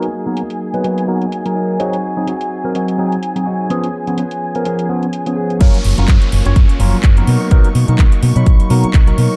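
A swung 4/4 groove at 126 BPM, with 56% swing on the 16ths, drives this feel-good, funky slice of filtered disco house in F# major, cut from a longer piece. From the start, a barky, lightly overdriven tine electric piano sits up front through a combo amp, its phaser adding colour as it accompanies chords moving through Bmaj7, G#7 and C#7. A distant, focused violin section holds rich, vibrato-laden sustained chords, while a bright, clean, picked electric guitar riff stays in the background. Beneath them, a house kit of metallic hats, handclaps and crash cymbal sits low in the mix, its hats and cymbals pumping and filtered. A filter sweep runs through this opening until the drop at 5.6 seconds, where a punchy, tape-warm electronic kick arrives up front alongside a round, foam-muted dub bass and a downlifter, as the harmony shifts to F#maj7 and then Bmaj7. Sidechain pumping and low-pass filtering shape the piano, violins, guitar and bass, and light reverb frames a dark production.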